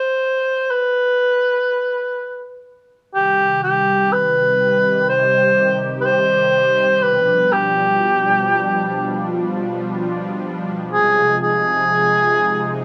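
A solo cor anglais opens this short cut from a longer acoustic folk-pop ballad, playing the melody alone in a mellow, classical style with light vibrato. Its tone is roomy and a little distant, yet it sits up front, carried by a plate reverb, and it stays between G4 and C5 throughout. At 3.1 seconds a sweeping, resonant pad enters beneath it with sustained chords. The pad's detuned sawtooth sound evolves, with a gentle attack, a long release and a shimmer of chorus, and it moves through Cm, G7 and Fm7. The unhurried, straight pulse and the small room around both parts give the piece a melancholic, intimate mood until it breaks off at 12.8 seconds.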